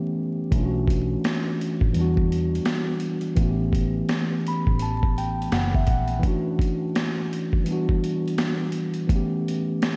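Vinyl crackle and a light reverb frame this melancholic, nostalgic lo-fi hip hop piece, cut from a longer track and moving at 84 BPM in 4/4 with a 64% swing on the sixteenths. A mellow tine electric piano opens alone, its clean, warm tone heard as if through built-in speakers and softened further by cassette tape coloring and a low-pass filter, sitting up front as it carries the chords. At 0.5 seconds a boom bap sampler-style drum kit arrives with a thumpy kick, a high-tuned snare and hi-hat, sounding compressed, pitched down and gritty with vintage 12-bit sampler character, as if re-recorded in a large room yet placed close to the listener. A vintage muted fingered electric bass joins at the same moment, dark, amped, foam-muted and punchy, holding the low end until it drops out at 6.2 seconds. The harmony drifts through jazzy extended chords such as Bm11, Em9, A7 and E13sus4, lending the loop its wistful, dusty mood.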